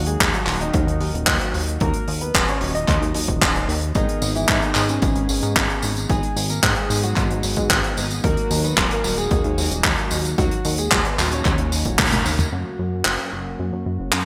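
A straight 4/4 italo disco groove comes from a dry, up-front 70s drum kit with handclaps, hi-hat, tambourine and toms in gated reverb, joined by a punchy electronic kick, in a melodramatic, nostalgic fragment cut from a longer piece. A detuned, chorused synth bass with a filter pluck anchors the low end while a glossy chorused polysynth plays stabs in the background, and a baby grand piano carries the melody with long sustain, subtle chorus and digital delay until 12.4 seconds. A drum fill and band accent at 12.0 seconds lead into a brief new section, with the mix set in a lush hall reverb and bright 1980s-style digital production.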